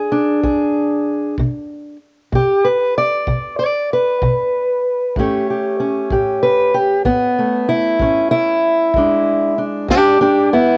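Acoustic country blues in a swaggering, gritty 12/8 at 64 BPM, cut from a longer piece, where a dark, boxy fingerpicked parlour steel-string guitar with fresh strings and audible finger squeak carries the melody up front from 0.0 to 10.8 seconds over E7 and A7 chords, while a punchy, natural kick drum with a cassette-tape character sits low in the mix from 0.4 seconds, all set in moderate spring reverb and studio ambience on a home cassette recording.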